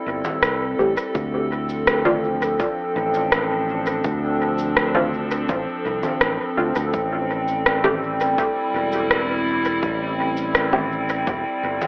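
A dripping spring reverb and heavy echo wash over this short ambient dub excerpt, while a narrow, telephone-like filtering colors the whole mix. At a relaxed 83 BPM in A minor, tuned slightly flat at A4 = 439 Hz, the mood is deep and meditative as the harmony moves from Am7 to Dm7 at 1.2 seconds and returns to Am7 at 6.9 seconds. Up front, a warbling, detuned pad built from square, triangle and sawtooth tones holds slow-blooming chords with chorus, phaser and its own reverb, giving a nostalgic, lo-fi haze. Underneath, a punchy fingered electric bass sits low, joined by a layered electronic kick and tape-toned electronic congas, shaker and rim click, the hand percussion carrying dub echo and the air of a large room. Further back, a muted, full-bodied sawtooth chord stab with a quick filter pluck enters at 0.8 seconds, drenched in phaser, lush chorus and dub echo.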